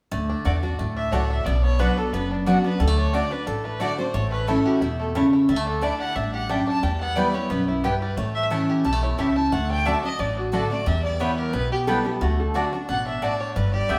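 Bluegrass with a joyful, lively swing, cut from a longer piece and played live by a band in one stone room with a wet reverb. A twangy, fingerpicked banjo carries the melody beside a clear, nasal bowed fiddle with light vibrato, while a full-bodied steel-string acoustic guitar with fresh strings and finger squeak picks the accompaniment. The mandolin adds bright double-string stabs, the woody, thumpy upright bass sits up front, and a metallic slide resonator guitar briefly plays a second line from 11.9 to 12.8 seconds.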